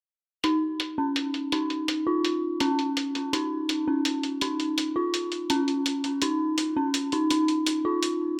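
Heavy and dark, this half-time drum and bass fragment sets an eerie, detuned FM synth bell playing warbling arpeggios from 0.4 seconds, its inharmonic, decaying tone coloured by chorus, vintage 12-bit sampler grit, tape echo and a filter sweep, over a compressed, pitched-down, low-passed electronic hi-hat with a tape-warm edge, inside a wet echo chamber reverb.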